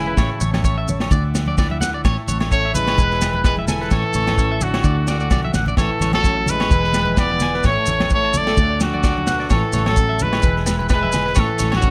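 A clear, up-front trumpet carries the melody with light vibrato and analog delay over a carefree, joyful highlife groove, shadowed in the background by a scooping jazz-style trombone, while a bright fingerpicked nylon-string guitar, twangy slightly broken-up electric guitar arpeggios with their own delay, a very quiet reedy combo organ, round foam-muted fingered bass, a punchy vintage drum kit with a fill at 5.3 seconds, ringing agogo bells, grainy maracas and thick-skinned congas fill out this cut from a longer piece.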